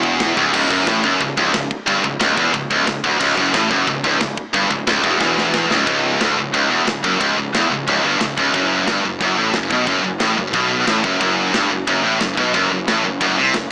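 Two bright, distorted high-gain guitars open this dark, epic heavy metal excerpt at 180 BPM in C# minor: one picked riff up front and a scooped one behind it, with a growly fuzz bass underneath and a tight, polished drum kit with gritty saturation and bright cymbals in the background. A drum fill at 5.2 s leads into a new section at 5.9 s, and the harmony moves from C#m to F#madd11 at 8.5 s, all heard through light reverb with a small-speaker character.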